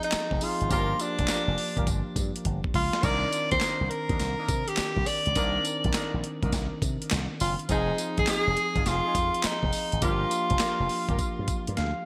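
New jack swing R&B at 103 BPM in F dorian, punchy and confident, where a breathy tenor saxophone with delay carries the up-front melody over barky tine electric piano chords, a gritty, overdriven sampler-style drum kit with gated reverb, handclaps and tambourine, bright envelope-filtered slap bass, and a mellow horn section adding smooth background stabs from 0.7 seconds, all in a bright 1980s-style digital production with a drum fill at 2.5 seconds and an electric piano fill closing this excerpt at 11.5 seconds.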